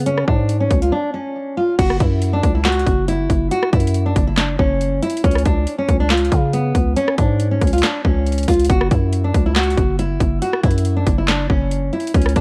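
A half-time trap groove in 4/4 drives this dark, melancholic hip hop clip, with an overdriven electronic kit entering at 0.1 s: a hard-clipped kick, sharp snare, metallic hi-hats, handclaps, rim clicks and crash cymbal, all up front. A full-bodied, fingerpicked nylon-string guitar carries the melody in a narrow register, while a growling, buzzy 808-style bass with a fast attack and decaying tail sits beneath it, both prominent alongside the drums. A short break arrives at 0.9 s before the second section takes over at 1.8 s, and the dry mix is coloured by worn cassette tape with a warbly pitch drift.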